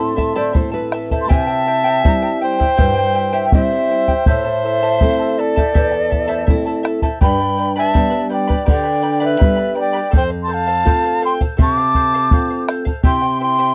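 Andean folk in 4/4 at 82 BPM, festive yet melancholic, with a mellow, airy large quena carrying the melody and a clear soprano saxophone adding a vibrato-tinged second line alongside shimmering double-strung charango and bright fingerpicked nylon-string guitar. The guitar opens with a short fill, and the bombo enters at 0.2 seconds during it, its round, dry thump sitting up front, while the tempo gradually speeds up across the cut through a minor-key progression moving from Am through C, G and F. The sound is a dry, close 1970s-style studio recording with little reverb, taken from a longer piece.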